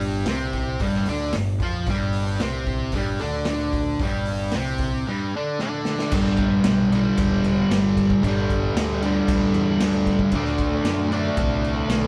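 A bright, fuzz-drenched guitar sits up front in this swaggering garage rock excerpt, playing a picked, distorted riff that is double-tracked and compressed, moving between G2 and F4. Beneath it, a growling electric bass adds overdriven weight, its warm tone blending a direct signal with an amp. The raw acoustic drum kit fills a small, pumping room with a boomy kick, a medium-tuned snare, hi-hat and dark crash cymbals, all saturated and gritty with a rolled-off top. The rowdy groove runs at 114 BPM in a straight 4/4, and a drum fill at 5.6 seconds carries the band into a new section at 6.1 seconds. The harmony opens on a G5 chord and shifts to D at 10.3 seconds, with light reverb giving the feel of a band playing live together in one room.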